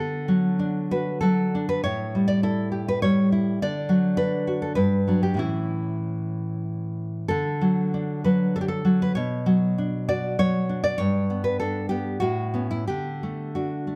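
Moving in a rubato 3/4 that drifts between 88 and 106 BPM, this tender romantic piece for solo classical guitar sits in D major and is cut from a longer work. The fingerpicked nylon-string guitar, up front and full-bodied with a deep classical voice, spans G2 to D5 as it moves through chords like Gmaj7, Bm and an Aadd9 before settling back on D at 12.9 seconds. Close, detailed microphones capture the instrument within a moderate recital hall reverb, lending the 14-second passage an intimate, warm glow.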